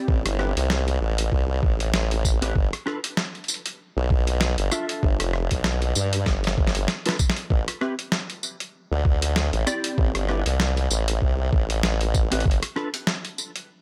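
Glitch hop at 97 BPM in A minor, with a swaggering, gritty 16th-note swing, this excerpt circles between Am7 and G9. A compressed, pitched-down electronic kick thumps beneath an up-front, sampler-style boom bap kit of medium-tuned snare, hi-hat, rim click and tambourine, and a drum fill arrives from 6.3 to 7.5 seconds. A wobbling formant-sweep bass blends sawtooth and sine with tube saturation and chorus, while a dark, clean, fingered electric guitar plays stabs treated with ensemble chorus, sidechain pumping and tape echo, all set in a digital ambience.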